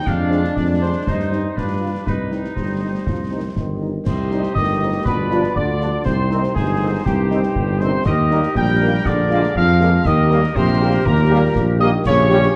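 Up front, a soft-attacked tuba anchors this resolute, martial 120 BPM wind-band march in C minor and 2/4, with a vintage-toned trumpet section carrying the melody over distant, roomy trombone chords, a clear woodwind second line, very quiet French horn accompaniment and close concert snare, bass drum and dark clash cymbals, while a warm euphonium and a crisp, wooden piccolo with vibrato join on second lines at 4.1 seconds, all within a dark, reverberant large-studio sound in this cut from a longer piece.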